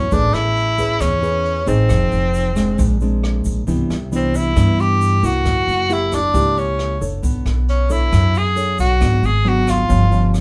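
A straight 4/4 bossa nova pulse at 135 BPM opens this sunny, sophisticated fragment cut from a longer piece, with the band playing live together in a studio room with moderate ambience. A jazz brush drum kit sits in the background with hi-hat, rim click and a boomy kick, joined by a grainy, bright egg shaker that sounds distant, as if set far back in a large room; both come in at 0.1 s. The upright bass is played pizzicato on steel strings, with a woody, thumpy tone, while a small, warm-toned nylon-string guitar is thumb-plucked as accompaniment from the very start. Up front, an edgy tenor saxophone carries the melody as a forceful, punchy jazz solo with vibrato, sitting present in the mix between C4 and G#4. The harmony moves through rich jazz colours such as Amaj9, Bb9, Cmaj9, F#7b9 and Bm9 before landing on G7#11 at 9.9 s, with everyone tuned to A4 = 441 Hz and playing through to 10.4 s.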